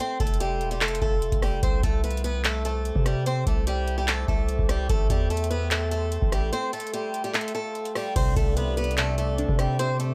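A half-time trap groove at 147 BPM in 4/4 rides on a booming analog drum machine, its deep kick, metallic hats, handclaps, rim clicks and crash up front, while a long, mellow 808-style bass enters at 0.2 seconds beneath a picked swing-style acoustic guitar carrying a bright, boxy melody through delay. A dark, moody ambient pad with chorus and built-in reverb sustains Fadd9, Cadd9 and Am7 chords in the background of this wistful, dreamy C major hip hop piece, with a break arriving at 6.5 seconds. At 8.2 seconds a soft, round octave-layered synth lead with chorus, tremolo and delay and warbly, nostalgic lo-fi synth keys enter together for the closing stretch.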